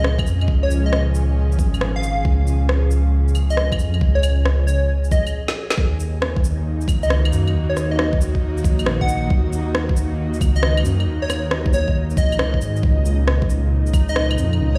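A wistful, nocturnal future garage piece in Eb minor at 136 BPM with a swung 16th-note feel opens on a bright, catchy plucky unison lead carrying the melody through a dub echo, an airy, breathy pad on chorus-warbled sustained chords, a dark, rumbling detuned saw bass up front, and a reversed, dreamy swelling texture in the background, with an overdriven, knocking electronic kick joining at 0.2 seconds. Electronic rim clicks, claves, shaker and a woody, overdriven snare drive the groove in a small room ambience, while the pad and bass pump against the sidechain over Bbm7, Ebm and Bbm harmony. A brief stop at 5.3 seconds brings a drum fill into the next section, all heard as if played on a big sound system in a bare stone room.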